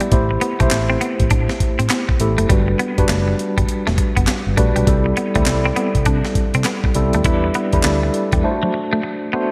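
A gritty, pitched-up breakbeat kit swings 16ths at 101 BPM in 4/4, its thumpy kick, snare, hi-hat and handclaps bathed in gated reverb, while a dark, foam-muted fingered bass adds round, punchy low end in this confident, slick new jack swing R&B excerpt. Up front, a tine electric piano with medium tremolo plays chords moving from Am7 through Gmaj7, C6 and Em7, and a bright, twangy clean guitar picks a scooped riff through analog chorus. At 8.4 seconds the drums and bass stop for a break on D7, leaving piano and guitar until 9.5 seconds, all set in a lush hall with bright 1980s-style digital production.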